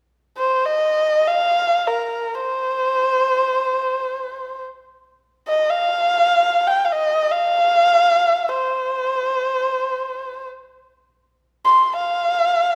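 Played in free time, this brief excerpt of Chinese traditional music unfolds in the C yu mode with a graceful, wistful mood. A single erhu carries the solo from 0.4 s to 12.8 s, bowed by one player and ranging from Bb4 up to C6. Its tone is dark and woody with a smooth top, shaped by vibrato and portamento. The instrument sits up front, surrounded by the reverb of a recital hall with a 1.4 s decay. The tuning rests at A4 = 441 Hz.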